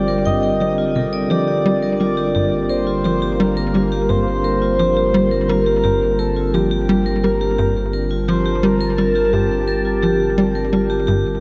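Mysterious and cosmic, this short cut from a longer piece of ambient, sequencer-driven space music sits on a single Gmadd9 chord in a straight 4/4. A tight, punchy sequencer bass drives the piece with a sawtooth and square-wave riff, its plucked, fast-decaying notes colored by a moving notch, analog chorus and delay, and it stops at 11.2 s. Beneath it, a round sine sub bass holds one deep, sustained low note. A detuned, resonant pad sustains evolving chords with a slow attack and long release, bathed in chorus and shimmer reverb. Up front, a close-miked vibraphone struck with hard mallets rings out bright, metallic arpeggios with its motor off, while a breathy, flute-like synth lead carries a soft melody with vibrato, tremolo, analog chorus, shimmer reverb and delay. The whole recording sits in a lush hall reverb with a long, wet tail.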